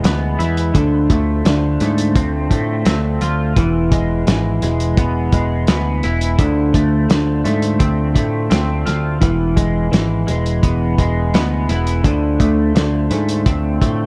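A twangy, scooped electric guitar plays a riff through rotary speaker and tape echo, sitting up front in this dark, mysterious psychedelic rock excerpt that moves between E and Dm7 in a straight 4/4 feel. Beneath it, an overdriven picked bass gives a round, dark low end, while a cloth-damped, thuddy drum kit with a fat snare, tight kick and hi-hat sounds muffled, gritty and lo-fi, its tape echo adding to the echo-heavy mix. In the background, a percussive tonewheel organ holds lightly overdriven sustained chords with key click and a stopped rotary speaker, all within a small room's light reverb.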